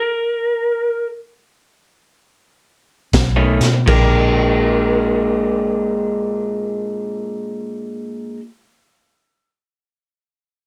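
In free time that slows through its opening seconds, this swaggering, laid-back electric blues shuffle excerpt in B-flat mixolydian opens on a lone lead guitar through a small old amp, slightly broken-up and compressed, its picked melody shimmering with vibrato. At 3.1 seconds a dark, round, foam-muted fingered bass and a raw garage drum kit land together on a B9 chord: the drums are a gritty, saturated burst of boomy kick, high-tuned snare and dark cymbals in a pumping small room, gone by 4.1 seconds. From 3.4 seconds a second lo-fi, up-front guitar adds a riff, and the harmony moves to a Bb6 chord at 3.9 seconds, all under light reverb.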